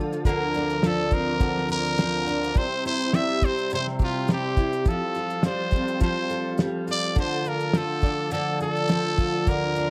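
The recording has a light reverb and a close, intimate sound, with the drums, guitar and trumpet all set up front. This is a short cut from a longer acoustic pop piece with an easy-going, sunny mood and a gentle swing. A double-tracked steel-string acoustic guitar picks a full-bodied accompaniment, while a tonewheel organ holds smooth, clean sustained chords in the background through a slow rotary speaker. A cloth-damped drum kit enters at 0.1 seconds with a thuddy, dark, dry sound: a fat snare, a tight kick and a shaker, with a rolled-off top. From 0.3 seconds a growling trumpet carries the melody in a pop style, brilliant yet raspy and gritty, punchy with a light vibrato. The harmony moves through Bbadd9/D, C, Fadd9 and Dm.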